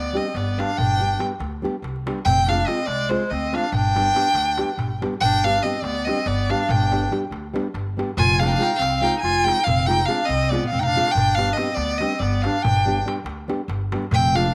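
A straight 7/8 pulse at 283 BPM, counted in eighths, drives this bittersweet, virtuosic Balkan wedding-band folk piece in G phrygian dominant, cut from a longer performance, where an up-front, warm violin carries the melody with vibrato and portamento over a bright, vintage-toned clarinet second line, thumb-plucked nylon-string guitar accompaniment with audible finger squeak, woody pizzicato upright bass, and a crisp metal-shell darbuka sitting in the background that plays a fill from 10.6 to 11.2 seconds, the whole band set in light reverb.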